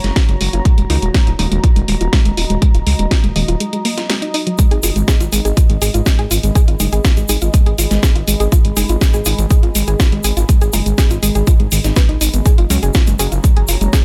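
Melodic techno at 122 BPM in G# minor, this excerpt feels melancholic yet driving, moving through F#, D#m and G#m chords before returning to F# at 12.5 seconds. A punchy, tape-warm electronic kick sits up front from 0.2 seconds, alongside a house kit whose cracking snare and hi-hat carry a small-room character, while a grainy, bright tube shaker enters in the background at 4.6 seconds, just after a brief break from 3.6 seconds. Underneath, a deep, rumbling detuned saw bass with a saturated, beating tone pumps against the kick. A soft, round pluck plays arpeggios through chorus and digital delay, with a filter sweep running across it for the whole passage, and a muted, very quiet dub chord stab adds phaser-tinged stabs. Sustained chords from a moody, deep ambient pad with slow attack, long release and built-in reverb float behind the groove, pumping with the sidechain, in an otherwise dry mix.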